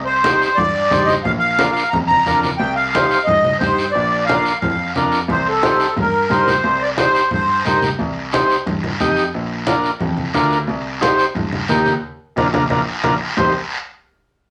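Cumbia in C minor at 178 BPM, passionate and driving, with a sweet, reedy accordion up front carrying the melody until about 7.8 s over a buzzy, overdriven combo organ with light vibrato, a grand piano with short sustain holding the bass, low-tuned congas with a bright, saturated tone, and a raspy guiro, all in a wet studio ambience, alternating Cm and Bb before a band accent at 12.0 s in this cut from a longer piece.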